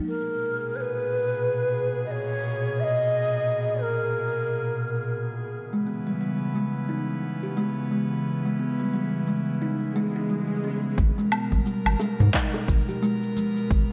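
A brief kalimba pluck opens this earthy organic downtempo fragment at 88 BPM in G# harmonic minor, giving way to a breathy, reedy low ney melody with delay over an airy pad with chorus and sidechain pumping, before the woody kalimba returns with delayed arpeggios at 5.7 seconds as the chords move from G#madd9 to C#m7. After an electronic swell, the groove arrives at 11.0 seconds with a round, deep analog bass, an overdriven electronic kick, shaker, woodblock and handclaps, joined at 12.0 seconds by soft-handed bongos and congas in the background, all set in a lush hall reverb with a bright 1980s-style digital sheen.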